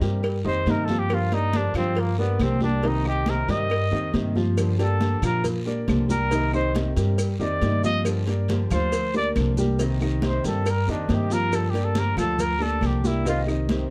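A breathy, intimate trumpet solo with soft-attack vibrato sits up front over a danceable, nostalgic Cuban son and guajira groove at 138 BPM in G minor, where a thumpy gut-string upright bass, deep-toned grand piano arpeggios and fingerpicked nylon-string guitar with finger squeak circle between Cm7 and Gm7, while bright high-tuned congas, a round low cowbell, raspy guiro, very quiet woody claves and, from 4.6 s, grainy maracas fill out a dark production with light reverb.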